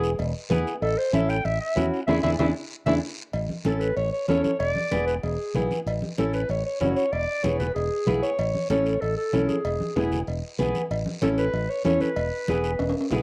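Cumbia at a brisk 190 BPM in A major, this danceable, festive clip is cut from a longer piece and has the hazy character of a home cassette recording with moderate spring reverb and studio ambience. A classical-style clarinet carries the melody from the start, sounding distant and roomy yet up front, and its opening solo runs to 3.3 seconds before a band accent and a drum fill lead into the next section. A fingerpicked flamenco guitar also sits up front with an acoustic, warm accompaniment, while a punchy, amped fingered electric bass anchors the low end. Percussion fills out the groove: a raspy, dry guiro up close, damped, thick-skinned congas pushed into the background with compressed saturation, and ringing metal-shell cowbell and timbales in a small room. The harmony moves between A and E or E7 throughout, and a final drum fill arrives at 12.5 seconds as the clip closes.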